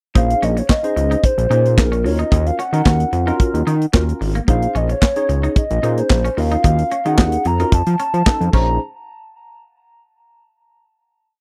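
A hollow, woody clarinet-like synth lead plays call-phrase motifs over a danceable early-eighties boogie funk groove: a fat, detuned sawtooth bass with slides, worn and lightly overdriven tine electric piano stabs, a twangy muted guitar line at the edge of break-up, and a tight, dry funk kit with clap-layered snare driving a four-on-the-floor beat, all in a close 1970s-style studio sound that closes on a final hit at 8.8 seconds.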